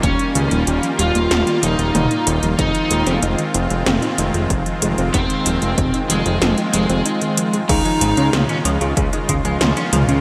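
An overdriven, picked lead guitar through a small cranked amp opens this cinematic, driving synthwave excerpt in F minor at 94 BPM, carrying the melody with tape echo over a soft supersaw whose smooth, detuned chords pump against the sidechain. Underneath, a fat analog bass with a sawtooth bite sits up front beside a punchy, tape-warm electronic kick. Alongside them, 80s pad drums bring a gated snare, toms drenched in gated reverb, metallic hats and crash cymbal. A soft, round pluck with a dark, gentle tone plays arpeggios in the background, thickened by chorus and tape echo while a filter sweep moves across it until 7.7 seconds, with a brief break at 7.1 seconds. A bright, clean semi-hollow electric guitar arrives at 7.7 seconds with a compressed, picked riff, coloured by analog chorus, tape echo and slapback echo, and the lead guitar drops out at 8.3 seconds as the harmony moves from Ebadd9 and Fm7 to Dbadd9. 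A lush hall reverb gives the whole mix a big arena sound.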